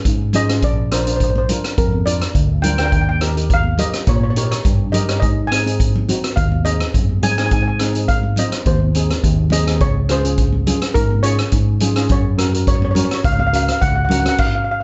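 A shimmering steel pan opens this festive, bouncy calypso fragment at 105 BPM in Db major, joined almost at once by a barky, bell-like tine electric piano carrying the bass through an ensemble chorus, a roomy street-band drum kit with a boomy kick, hi-hat, rim click and crash, bright, high-tuned congas played with hard hands in the background, and a mellow, dark second steel pan singing the melody in plate reverb, as the chords move through Db, Bb, Eb, Ab and Gb before a stop at 14.4 seconds.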